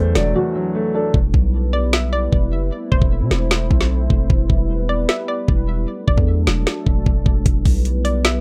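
A dark, boxy grand piano melody with delay and a mellow baby grand accompaniment open this melancholic, brooding E minor trap excerpt at 152 BPM in a half-time feel, over a detuned sawtooth pad with chorus, a hollow, bouncy square-wave pluck with chorus and delay, and a punchy, heavy 808-style bass. The electronic drum kit, with its knocking kick, woody snare and metallic hats, enters at 0.2 seconds, and both pianos fall away by 1.2 seconds. From there the pluck, pad, bass and drums carry the dry, up-front mix through Em, Am/E and D/E, with the hi-hats muted until 7.5 seconds.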